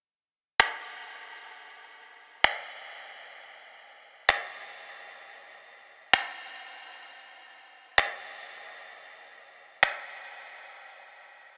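Electronic finger snaps sit up front in this hazy, ethereal hip hop fragment, cut from a longer piece. They come in at 0.6 seconds and carry on until 9.9 seconds, with a produced, electronic character and a touch of soft clipping that lends them a slightly gritty edge. The music moves in free time, so the snaps float rather than marking out a steady beat, and the opening stretch through 7.0 seconds plays as a break. A huge ambient reverb with an 8.0-second decay surrounds them in a vast, misty space that lingers well after each hit. The dense, heavily limited modern master keeps the sound full and pressed together, adding to the dreamy, suspended mood.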